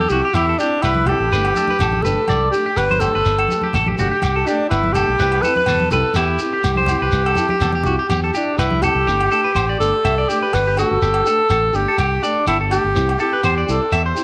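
The recording sits in a moderate plate reverb, carrying a joyful, danceable highlife guitar-band groove with a light swing on the sixteenths, cut from a longer piece. Up front, a breathy alto saxophone takes the solo melody with a soft attack, its tone clear, whispered and intimate in a pop style. An electric guitar at the edge of break-up plays twangy, slightly broken-up arpeggios through a phaser, while a punchy fingered electric bass holds the low end with a direct, amped sound. In the background, a dark, fingerpicked nylon-string guitar adds small accompaniment. The percussion blends a grainy, mellow shekere, ringing agogo bells that sound close and dry, and medium-tuned congas that drop out at 8.9 seconds. The harmony alternates between C and Gsus2 across two passes of the same section.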